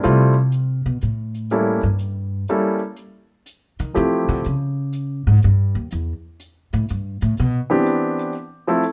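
Jazz piano trio in a playful, relaxed swing at 122 BPM in 3/4 and C major, a short cut from a longer piece built around an upright bass solo: the woody pizzicato bass with steel strings sits up front from 0.1 to 7.6 seconds while brushes on the hi-hat keep time softly in a studio room. A warm baby grand piano with a natural, short-sustained touch, also up front, plays the melody until 4.4 seconds and returns at 7.7 seconds. The harmony moves through a rootless F, A7b9, Dm11 and Db5 to Cmaj9, all under light reverb.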